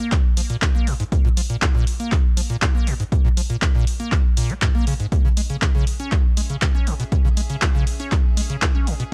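Acid house excerpt with a hypnotic, driving pull: a squelchy, resonant square-wave acid bass riff with tube saturation, subtle chorus, tape echo and sidechain pumping runs over a punchy, up-front electronic kick and a dry, overdriven analog drum machine of handclaps and hi-hat, while a rich chamber string section, bowed with light vibrato and sidechain pumping, fades in from the background at 5.1 seconds on a Dbm chord, all in a gritty hardware recording with digital ambience.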